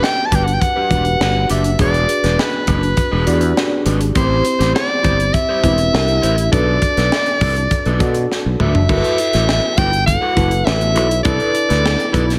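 An edgy, forceful soprano saxophone leads this polished 1980s jazz-funk pop excerpt, its vibrato-laden pop-style solo sitting up front over a straight 102 BPM groove in E minor with an urban, slick mood. Beneath it, a growly fretless electric bass enters at 0.3 seconds, bright and punchy with a direct, amped tone that sustains through the low end. A worn, slightly out-of-tune tine electric piano supplies accompaniment with light overdrive and a lush chorus, while a dark, picked electric guitar at the edge of break-up carries a riff through analog chorus. The tight funk drum kit, with its high-tuned snare, tight kick, hi-hat, crash and toms, sits mid-forward under gated reverb, and a drum fill at 8.3 seconds ushers in a new section at 8.9 seconds. The harmony moves from Em7 through E7, Am7, C7 and Bm7 before opening onto Gmaj13 and a rootless Cmaj13, all set in light reverb and small room ambience.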